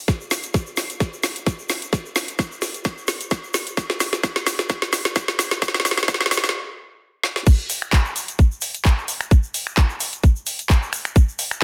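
House drums at 130 BPM in 4/4 with a light swing on the sixteenths, cut from a longer piece, strut with a swaggering, aggressive mood. A tight, layered electronic kick sits up front beside a garage-style kit of woody snare, metallic hi-hats, crash cymbal, finger snaps and handclaps, its snare softly clipped. Further back, a grainy, bright acoustic egg shaker plays in a small room. The first 7.5 seconds are a build-up driven by a drum fill that runs until 6.5 seconds, then the groove stops briefly, with another fill at 7.2 seconds. The drop lands at 7.5 seconds and carries through to the end. The sound is dense and heavily limited, with light reverb and a high-pass filter on a modern master.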